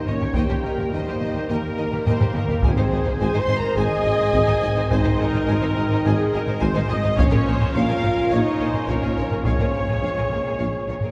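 Heroic and majestic, this epic cinematic film-score passage is cut from a longer piece and moves in a straight 4/4 over Eb, Ab and Bbm7 chords, bathed in a reverberant church acoustic. A dark violin section carries the expressive melody from the background, with vibrato, soft attack, portamento and a smooth top. A second, focused violin section adds its own line, and lush violas with a rich, even tone fill in the accompaniment. Mellow French horns and background trombones, both in a classical style with light vibrato, hold sustained chords. Very quiet cellos sit close, a distant, clear double bass section and a very quiet solo tuba anchor the bass, and the taiko ensemble drives the music with hard sticks, close and dry. A drum fill from 2.1 to 2.6 seconds leads into a brief, very quiet timpani part with medium mallets on calf heads, heard until 3.4 seconds.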